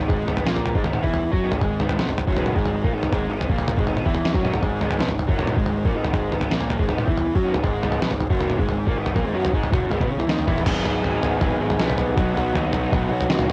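Lightly reverberant, this home cassette recording has a lo-fi, homemade sound. It's a short cut from a longer indie rock piece in G# minor at 159 BPM in a straight 4/4, with a bittersweet, restless mood. Up front, a raw garage guitar plays a picked, overdriven riff with a lo-fi edge, while a brighter, crunchier guitar riff sits in the background, coloured by ensemble chorus and tape echo. A fuzzy, overdriven electric bass rumbles low in the background, and a pitched-down, sampler-style drum kit sits up front, muffled and compressed, with a thumpy kick, a medium-tuned snare, crashes and toms. The kick and snare drop out at 4.4 seconds, and at 10.7 seconds the music moves into a new section, where the harmony shifts from G#m to G#m7 and then to Bmaj7 at 12.2 seconds.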